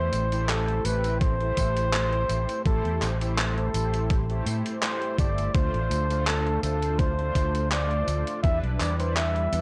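A dry, gritty cassette-tape sound frames this melancholic, woozy vaporwave fragment in A minor, moving at 83 BPM with a light swing on the sixteenths over chords of Am7, Dm7 from 5.5 seconds and Em7 from 8.4 seconds. A mellow flugelhorn with light vibrato and a smooth top carries the melody through tape echo, above detuned, sub-octave synth brass with a filter sweep, subtle chorus and analog delay, while a bright, growly fingered electric bass sits up front. Overdriven, sampler-style drum-machine handclaps, hi-hat and tambourine with gated reverb enter at 0.1 seconds, and a thumpy, overdriven electronic kick joins at 1.2 seconds and drops out at 8.6 seconds.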